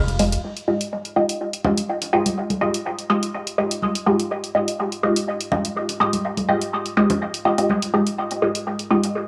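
A muted, detuned dub chord stab sits up front with 12-bit sampler grit, phaser and dub echo, its short plucked chords voicing Fm9 from 0.4 seconds in this meditative, nocturnal dub techno piece at 124 BPM in F minor with a light 16th-note swing. A dark, nasal analog pad with chorus holds sustained chords in the background while an overdriven electronic hi-hat with studio reverb keeps time, and layered, tape-warm congas with echo join at 1.6 seconds and stop at 7.8 seconds. The recording is dry and gritty, coloured by transformer saturation, cassette tape and a moderate spring reverb.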